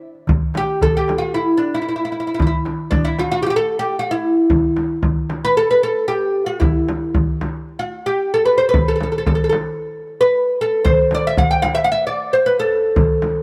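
A straight, even four-beat pulse opens with a crisp, high darbuka that sounds small and distant in a large room, joined at 0.3 seconds by a deep frame drum played with soft hands, close, dry and up front. From 0.6 seconds a woody, fretless oud with double strings carries the plectrum-plucked melody up front, giving this short cut from a longer Arabic maqam ensemble piece a soulful, melancholic character. A light reverb surrounds the small group.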